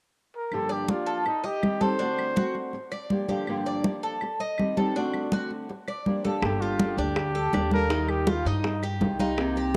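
Damped congas and dry, woody claves set a straight 163 BPM Cuban son and guajira pulse in G minor under fingerpicked flamenco guitar with finger squeak and bright, metallic Cuban tres arpeggios, while a breathy, whispered trumpet carries a sultry, intimate melody through a cassette home recording with moderate spring reverb; a thumpy pizzicato upright bass and tight, high-tuned bongos join at 6.4 s as this danceable fragment of a longer piece moves from Gm7 to Gmadd9 and Ebadd9.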